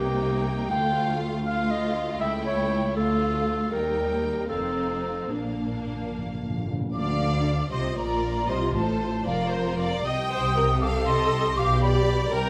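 Urgent and stormy, this classical passage in a rubato 6/8 sets a focused violin section on the melody above a rich second violin section, with close viola, background cello and double bass sections supplying accompaniment and bass inside a moderate scoring-stage reverb. A smooth, up-front solo clarinet carries a second line until 6.1 s, soft-mallet timpani on calf heads add a round fill from 5.3 s, and an airy, distant flute ensemble takes up another second line from 6.9 s. All the bowed strings play with vibrato; the violins, violas and double basses sound lush, and the cellos add expressive portamento.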